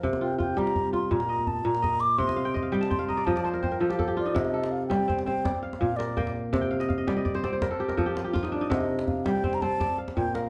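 Ringing, crisp kora arpeggios sit up front over a deep, soft-handed djembe in this flowing, hypnotic piece of West African traditional string music in 12/8, as an airy wooden baroque flute with soft attacks and an unsteady vibrato carries the melody from 0.2 seconds, while kora fills arrive at 2.3 and 6.6 seconds, and the whole band, playing live in one large room, is bathed in moderate reverb.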